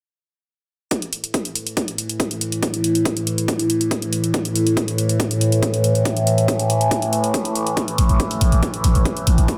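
Intense and relentless, this driving peak-time techno excerpt starts at 0.9 s with a heavy, layered electronic kick drum up front and an electronic hi-hat, both re-recorded in a large room, the kick high-pass filtered and the hats pumping against the sidechain, before a resonant sawtooth drone with moving overtones swells in at 1.7 s through chorus, phaser and its own reverb, and a growling, buzzy 808-style bass, low-pass filtered and pumping, joins at 8.0 s, all set in a dreamy mix soaked in plate reverb.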